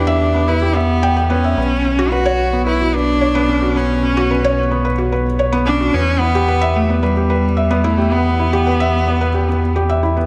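Light reverb and a small-room ambience frame this short cut from a longer piece of piano and strings electronica, with every part placed up front. At 110 BPM in a straight 4/4, tuned to A4 = 439 Hz, the mood is cinematic and moving as the harmony moves from E minor to B sus2 and back to E minor. A felt-muted upright piano plays the riff with a soft, mellow, intimate tone, short sustain and audible action noise, touched by digital delay. Beneath it, a round analog bass holds the low end with a dark, deep, sustained tone and a fast attack, its sound built from sawtooth, sine and triangle waves. A single bowed cello carries the melody, rich, smooth and even, with vibrato and its own digital delay, before dropping out at 9.8 s while the piano and bass continue to 10.3 s.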